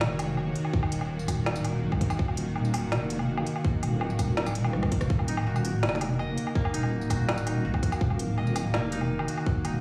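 Heard through stone-room reverb, as if played on a big sound system in a bare room, this tense, spacious half-time drum and bass excerpt sets a detuned, string-like sawtooth drone holding sustained chords with vibrato and sidechain pumping over a deep, wobbling bass thickened by chorus and tube saturation, with a tight, layered electronic kick entering up front at 0.7 seconds alongside an overdriven kit of woody snare, smooth hats, rim click, tambourine and woodblock that plays a fill at 4.7 seconds, before a bright, dry fingerpicked koto joins with tape-echoed arpeggios at 5.3 seconds.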